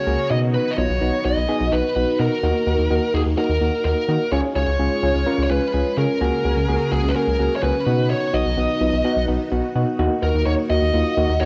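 Melancholic and nocturnal, this short pop fragment, cut from a longer piece, moves at a steady straight four with a hazy, home-taped cassette character and light reverb. A bluesy overdriven lead guitar carries the melody up front from the very start, its picked, distorted tone dark and electric. Behind it, a string machine full ensemble holds lush, vintage sustained chords, colored by phaser, ensemble chorus and cassette tape, sitting in the background. Soft electric-piano-like synth keys, round and mellow with chorus, supply gentle decaying accompaniment, while a rubbery square bass bounces with a hollow, wave-folded pluck beneath. The harmony drifts through B, Ebm, Db, Gbadd9/Db and B again before landing back on Ebm at 10.0 seconds as a new section begins.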